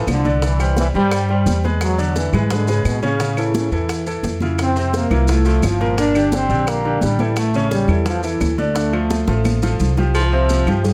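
A light reverb gives this fiery, passionate salsa excerpt an open sheen, with the bright concert grand piano and the thumpy, woody upright bass sitting up front. At 173 BPM in a straight 4/4, a clear trombone section carries the melody with vibrato from the start, while the brilliant piano supplies long-sustained accompaniment over deep bass, and the plucked bass holds the low end on dark steel strings. Percussion enters at 0.1 seconds: high-tuned, damped congas played with soft hands in the background, tight and very quiet bongos and cowbell struck with hard hands, woody claves, and grainy, mellow maracas heard from a distance in a large room. The chords move through Cadd9, E7, A, Fmaj7, Gmadd9, A and Dm, and a drum fill runs from 9.1 to 10.1 seconds. At 10.1 seconds, as the harmony lands on Csus4, a raspy, gritty baritone saxophone cuts in briefly on a single punchy F3 before the fragment ends.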